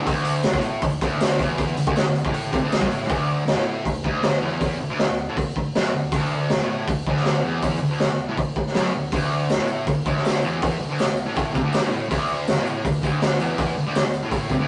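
A double-tracked fuzz guitar riff, bright and picked low in its range, kicks off this raw, rowdy garage rock excerpt at a driving straight 4/4 alongside a gritty, saturated drum kit with a punchy kick and high-tuned snare, while a very quiet, jingly tambourine appears from 0.4 to 2.8 seconds and returns at 9.1 seconds, all in a rough rehearsal-room sound with light reverb and a rolled-off top.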